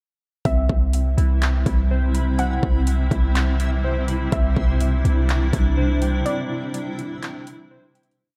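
Floating and dreamy, this short, complete atmospheric cloud-rap piece sits at 124 BPM in 4/4 with a half-time feel, resting in C major on a Cmaj7 chord that shifts to D9sus4/C at 4.3 seconds. A trap drum kit of hard-clipped kick, metallic hi-hats and handclaps plays a sparse half-time beat with fast hi-hat rolls, up front beside a deep, boomy 808-style bass whose long sub-bass notes follow the kick until 6.2 seconds. A granular cloud pad holds blurred, evolving chords in reverb with a sidechain pump, while a reversed, swelling texture drifts in the background from 1.3 seconds. On top, warbling lo-fi synth keys repeat a patterned eighth-note arpeggio like a sampled loop, and a dark, dusty pluck loops a sparse melody, both coloured by chorus, a low-pass filter and tape echo. From 6.3 seconds the music breaks and fades out, leaving the keys, pad, drums and texture to close under light reverb.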